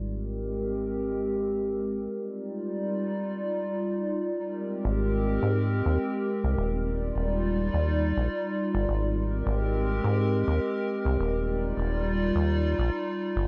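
IDM at 104 BPM in Ab lydian with a glitchy, playful mood, this fragment of a longer piece pairs a warbling, nostalgic, lo-fi pad of detuned square and triangle tones, treated with chorus and a filter sweep in its first 4.4 seconds, with a rubbery, saturated, resonant acid bass of dark sawtooth character, both up front throughout as the harmony alternates between Abmaj9 and Ebmaj9 inside a moderate plate reverb.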